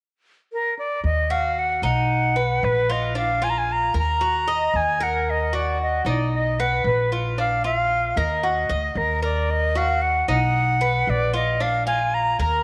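A straight 4/4 pulse at 114 BPM carries this nostalgic, warm stretch of Cuban son and guajira in Eb harmonic minor, cut from a longer piece. A bright, reedy jazz flute opens the melody at 0.5 seconds, airy and touched with vibrato and a soft attack, its rolled-off highs trailed by tape echo as it moves between Bb4 and Bb5. The upright bass enters at 1.0 seconds, plucked, woody and dark on steel strings, sitting low between Bb1 and Eb2. The Cuban tres follows at 1.3 seconds with mellow, picked arpeggios on its doubled, partly octave-paired strings, giving a metallic shimmer in the range from D4 to Eb5. From 1.0 seconds the harmony cycles through Ebm, B and Bb, with all three instruments placed up front in a moderate echo-chamber reverb over a small-room ambience.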